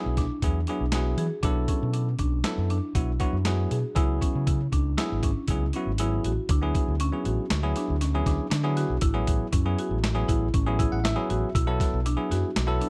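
Driving and intricate, this progressive instrumental cut from a longer piece moves at 119 BPM in a straight 5/4, with a bell-like tine electric piano comping over E7, Bm7 and C#m7 before the harmony shifts to Dmaj7 and Amaj7 at 6.5 seconds. A woody marimba played with medium mallets spins arpeggios through tape echo, while an overdriven, punchy fingered electric bass and a gritty, pitched-down sampler-style drum kit with a thumpy kick and medium-tuned snare sit up front. The kick and snare drop out briefly from 6.0 seconds, the electric piano adds a fill at 10.5 seconds, and the whole thing has a dry, close 1970s-style studio sound.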